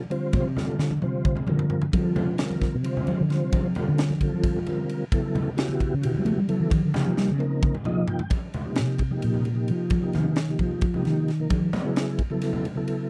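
Set in a straight 7/8 metre, this slick, bright slice of electric jazz fusion is cut from a longer piece and moves at a brisk clip. A dark, round fretless electric bass carries the solo, its amped tone punchy and mellow. Behind it, a soft, flute-like tonewheel organ comps up front, with key click, chorus vibrato and a slow rotary speaker adding gentle motion. An acoustic fusion kit with a high-tuned snare, punchy kick, ride cymbal and toms sits up front with an airy, polished studio sheen, dropping in fills around 0.6 seconds and 6.9 seconds. The organ adds its own short fill at 7.6 seconds, while distant congas played with soft hands ring out from a larger room over lush extended chords such as C13sus4, Gmaj9 and Eb13. The sound is dry and close, like a 1970s studio session.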